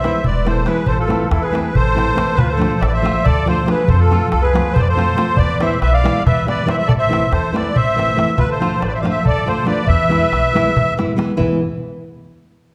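Set in 7/8, this virtuosic, bittersweet Balkan wedding-band excerpt puts a reedy, shimmering musette accordion up front on the melody and a mellow trumpet with light vibrato on the second line until 10.9 s, over a fingerpicked nylon-string guitar with audible finger squeak, a woody pizzicato upright bass on gut strings, and a clay-shelled darbuka sitting dry in the background, inside the wet, 1.6-second reverb of a church or concert hall.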